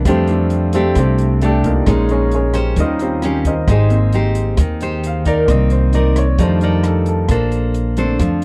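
A clear, intimate baby grand piano takes a solo from 0.1 s, its action noise audible and its notes sustaining long, over a sophisticated, breezy bossa nova at 133 BPM in straight 4/4, where a fingerpicked classical nylon-string guitar with fresh strings and finger squeak, a woody pizzicato upright bass set up front, and a dark, smooth jazz kit of hi-hat, rim click and boomy kick move through chords from F69 to Bbmaj9 in a dry, close 1970s-style studio sound, cut from a longer piece.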